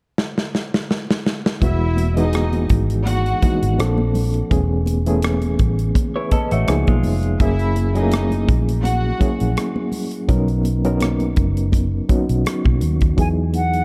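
Warm and smooth, this lush 1970s-style soul excerpt moves at an easy 83 BPM with a light sixteenth-note swing, opening on a drum fill from a modern studio kit with a punchy kick before a round, foam-muted electric bass, an overdriven, gritty reed electric piano with fast tremolo and very quiet, high-tuned congas arrive at 1.6 seconds under lush chords like Emaj9, C#13 and Bmaj9. A gut-string studio section adds a bowed second line with light vibrato until 9.5 seconds, a clean, compressed electric guitar riff with spring reverb flickers briefly around 6.2 seconds, and an airy, expressive jazz flute slips in up front at the very end. The production is dark and dry, with little reverb.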